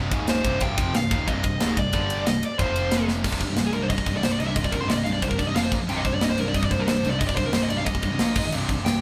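A dark, smooth overdriven lead guitar sits up front and carries the melody, breaking into a solo at 3.3 seconds after a drum fill in this dark, relentless heavy metal excerpt cut from a longer piece. Beneath it, three bright, picked rhythm guitars (one heavily distorted and high-gain, one compressed, one overdriven and double-tracked) drive the riff alongside a growly picked bass, while a tight, polished drum kit with a punchy kick and bright cymbals sits up front in the foreground. A very quiet, distant symphonic string section holds smooth sustained chords in the opening stretch and returns briefly near the end, all set in a light live-room reverb.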